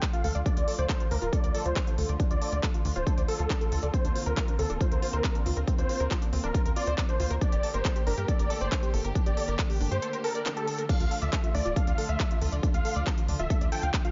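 Huge, detuned supersaw chords carry a soaring melody through tape echo in this driving uplifting trance excerpt, pumping over a punchy, up-front electronic kick, a techno kit of crash, handclaps and smooth hi-hats, a saturated sequencer bass entering at 0.2 seconds, nasal chorused synth arpeggios and clear bowed strings holding sustained chords under a filter sweep, with a brief break at 10.0 seconds before the progression returns home.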